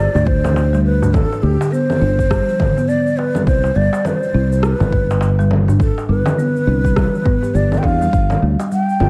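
A swung 4/4 groove at 103 BPM, built from an overdriven electronic kick and a layered electronic shaker, congas and rim click, sits beside a deep, clay-shelled darbuka played by hand, setting a peaceful organic downtempo mood in G mixolydian. A round, punchy fretless electric bass pumps beneath the breathy, end-blown ney melody, which sits up front with vibrato and tape echo, while a folk marimba with soft mallets enters at 0.7 seconds with woody, filtered arpeggios. The chords move from Gsus4 to Cmaj7sus2 and settle on G5 in light reverb, in this short passage cut from a longer piece.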